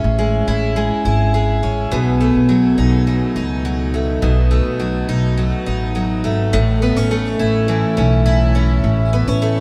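A moderate shimmer reverb washes over this short dream pop cut, lending its 9.6 seconds a floating, dreamy haze in A lydian at 104 BPM in a straight 4/4. Up front, a bright, octave-doubled twelve-string acoustic guitar picks arpeggios through lush chorus and digital delay, with the odd finger squeak on its fresh strings. Beneath it, a woody pizzicato upright bass holds the low end as the chords move from Amaj7 to B7, then to A when the second section arrives at 6.5 seconds.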